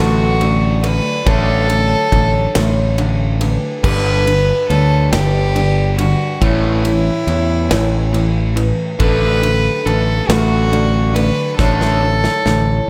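Cinematic and euphoric, this short post-rock excerpt moves at a slow 46 BPM in a straight 6/8, its harmony turning from D/A to G, Aadd9 and back to D/A. A rich, reedy violin with a gut-string, period-style tone carries the melody up front and close, one bowed player set in delay. Beneath it, a growling, overdriven fingered bass sits prominently in the mix, while a bright, picked distorted electric guitar drives a riff. A mellow vibraphone played with soft mallets rings in the background with slow motor vibrato and delayed arpeggios, and a glassy, ethereal FM pad enters at 0.7 seconds, very quiet, its slow-attack chords shimmering with ensemble chorus. A big acoustic rock kit with a punchy kick, medium-tuned snare, crash and ride comes in at 0.4 seconds and closes with a fill from 11.6 seconds, all bathed in a dreamy, reverb-soaked plate ambience.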